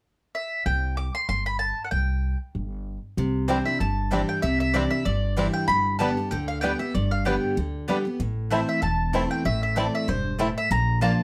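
Bluegrass in C major at a lively, joyful 191 BPM with a swung feel, this excerpt opens with a bright, up-front mandolin melody joined at 0.7 seconds by a thumpy, gut-strung upright bass, before a full-bodied dreadnought guitar enters at 3.2 seconds and a twangy fingerpicked banjo carries a second melody alongside softer mandolin stabs over light reverb as the chords move from Cadd9 through G and Am to Bb.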